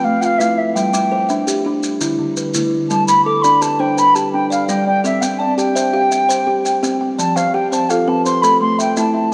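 A pure, tongued wooden flute carries the melody with vibrato, sounding distant yet up front, in this rippling, warm snippet of southern African traditional music built on an mbira-style interlocking cycle in a straight 12/8. Beneath it, two kalimbas spin arpeggios throughout: one soft and ringing with a hollow-box, fingertip-plucked woodiness placed forward in the mix, the other bright and buzzing with short thumbnail plucks on a solid board, while grainy, vintage-toned maracas enter at 0.2 seconds. A wet echo-chamber reverb bathes the parts as the harmony moves through G, C, F and Am after a brief opening section, the whole cut from a longer piece.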